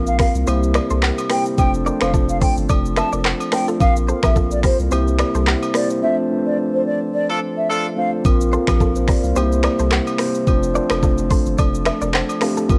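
Afrobeats at 108 BPM with a breezy, sunny swing, built on an up-front electronic kit with knocking kick, smooth hats, snaps, claps, rim clicks and shaker, a thick saturated sine sub bass, a clean mellow tine electric piano, and soft flute-stop organ chords with tremulant pumping in the background. A twangy, compressed direct electric guitar riff with analog chorus and delay sits behind an airy, hollow concert flute melody with vibrato that runs until 8.1 seconds, while agogo bells and woodblock add light acoustic percussion. A band break and accent from 6.0 to 8.2 seconds brings a brief, clear horn section line, all coloured by cassette tape and small-room home-recording ambience.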